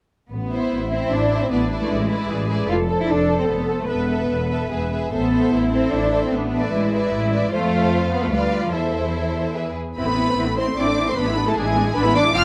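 A fast, rubato 3/4 pulse at 150 BPM drives this urgent, stormy excerpt of a romantic orchestral movement in A minor, where rich, bowed cellos and double basses set the low foundation from 0.3 seconds, two lush violin sections with vibrato join at 0.5 seconds carrying the melody and a smooth second line, and clear viola accompaniment enters at 0.7 seconds, all in light reverb over a restless progression circling from Am through E7/A and F.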